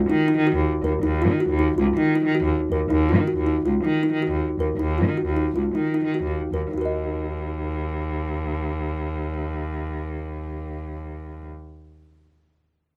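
Contemporary chamber music in 5/4, hypnotic and restless in Eb minor at 151-161 BPM, opens with a woody, dark kalimba plucked in short thumb-picked arpeggios over a clear, bowed cello bass sung with smooth, even vibrato by a single player placed up front, the tempo slowing between 3.7 and 6.7 seconds before a new section begins, all captured with close, detailed microphones in a dry room in this short passage cut from a longer piece.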